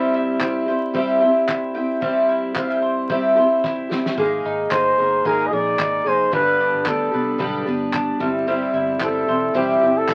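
This short excerpt sounds like a very old 78 rpm record, with vinyl crackle and a wet small-room reverb wrapped around an easy-going, heartfelt acoustic pop piece in C major at 112 BPM, in 4/4 with a light swing on the sixteenths. A fingerpicked twelve-string acoustic guitar sits up front from the start, its shimmering, octave-doubled dreadnought tone giving the accompaniment a full body. Beneath it, a mellow, round mandolin plays arpeggios on its double strings, and a loose indie drum kit joins at 0.4 seconds with handclaps, a tight kick and a fat snare under a rolled-off top. After a drum fill, a dark, foam-muted fingered electric bass enters at 4.2 seconds as the harmony moves from C over G to A-flat suspended second. At 4.7 seconds a smooth flugelhorn takes the solo melody up front with a light vibrato, carrying it through G and back to C.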